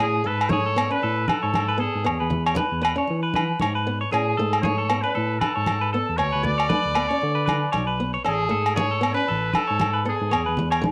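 Danceable and warm, this highlife guitar-band music with a light sixteenth-note swing, cut from a longer piece, features a punchy, up-front trumpet singing scooped, pop-style notes through a cassette-tape tint and plate reverb, over a dark, woody, boxy old acoustic guitar and a twangy, compressed clean electric guitar playing arpeggios (both also in plate reverb), while a clean tine electric piano carries the bass through its built-in speakers, ringing agogo bells chime, and bright, saturated congas struck with hard hands join at 0.5 s, all captured in a homemade cassette recording with a moderate studio room sound.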